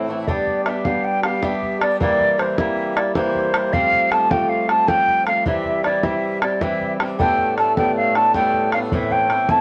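A hollow, airy wooden flute carries the melody up front with vibrato and tongued notes in this wild, spirited Celtic slip jig at 104 BPM in 9/8, over boxy fingerpicked swing-style acoustic guitar with audible finger squeak, a reedy, dark pedal harmonium drone and a tight, damped bodhran entering at 0.3 seconds, all in moderate studio reverb as the chords move from G through C7, F, C and Gadd9 to Amadd9 in this excerpt from a longer piece.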